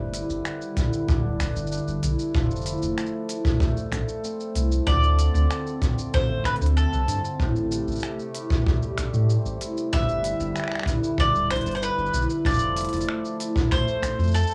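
Wistful and autumnal, this folktronica excerpt moves at 95 BPM in a straight 4/4, with a warbling, detuned tape-like pad holding dark sustained chords under shimmering hammered cimbalom arpeggios with tape echo, a round, deep analog bass, finger snaps, crisp hi-hat and shaker, and a punchy, up-front kick. A bright, picked bowl-back mandolin enters with the melody at 4.9 seconds as the chords move through Em7/G, Fmaj7, Dm7 and Am7. The excerpt has the lo-fi feel of a home cassette recording in a small room with light reverb.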